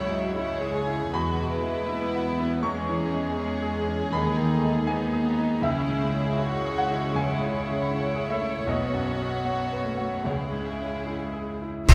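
A wet recital-hall reverb surrounds this bittersweet, sorrowful cinematic film score in C# minor, which moves at a rubato 79 BPM in 4/4 and is cut from a longer piece. A bright, brilliant grand piano sits up front over sul tasto strings. A dark, intimate chamber violin section carries the melody with vibrato, a pure, floating symphonic violin section adds a second line, and a warm viola section and a soft-attack cello section sit in the background, while a very quiet concert harp plays ringing, fingerpicked arpeggios. At 11.9 s, clash cymbals and concert bass drum strike close and dry, joined by a barely audible, woody double bass section.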